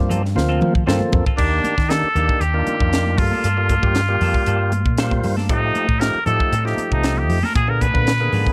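Electric jazz fusion with a slick, funky mood, where a nasal, straight-muted trumpet enters up front at 1.4 seconds over a percussive tonewheel organ with key click, slow rotary speaker and light overdrive, a growly, punchy fretless bass, a crisp drum kit with a high-tuned snare, tight kick and dark cymbals that plays a fill from 0.4 to 1.4 seconds, ringing congas and twangy, chorused guitar stabs in the background, all in a small room.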